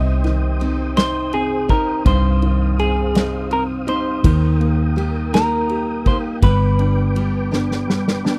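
A dark, clean semi-hollow electric guitar carries an aching, melancholic melody over clear concert grand piano, a soft, flute-like tonewheel organ with chorus vibrato and fast rotary speaker, full-bodied steel-string acoustic arpeggios in the background and a round, foam-muted electric bass, joined at 0.2 seconds by a punchy, up-front acoustic drum kit played with bundle sticks on kick, snare and ride, in a dry, close 1970s-style six-eight pop ballad in C minor at 55 BPM that moves from Cm to Eb to G before a drum fill at 7.5 seconds.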